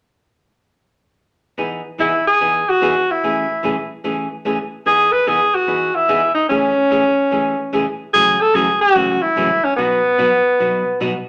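Swinging and down-home, this short country cut at 146 BPM in E major puts a breathy, vintage-toned alto saxophone up front from 2.0 seconds, playing a jazz-style subtone melody with scooped notes over a dark, clean, picked hollow-body electric archtop guitar that enters at 1.6 seconds, comping through Emaj7 and Amaj7/E before moving to F#m7 and B, all in a wet studio reverb.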